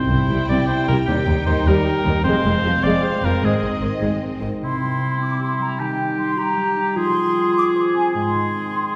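A bright, ringing concert harp spins arpeggios beneath a clear solo oboe through this adventurous, heroic cinematic passage in 6/8, cut from a longer piece. Lush bowed violin sections carry the melody and a softly attacked inner line over an even viola section, with mellow French horn chords set back in the blend and expressive cello and double bass sections on the bass, until the strings and horns fall away around 4.5 s and a dark solo clarinet and an airy, crisp large flute ensemble take up second lines from 4.6 s, heard from a distance in a reverberant scoring-stage space.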